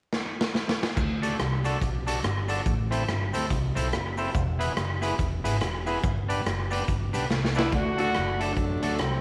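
A gritty, saturated garage drum kit opens with a fill at 0.1 s, its punchy kick and snare carrying a slapback echo, before an upbeat, cheerful ska groove at 142 BPM with a swung feel settles in at 1.0 s over a D–Am–E–G progression. A woody, growly upright bass sits up front alongside a very quiet, grainy cabasa, while a twangy, slightly broken-up electric guitar stays in the background and a percussive tonewheel organ with key click and light overdrive adds stabs. At 7.6 s a punchy horn section with light vibrato takes the melody as the groove returns to D, all wrapped in small-room ambience and vinyl crackle in this short cut from a longer piece.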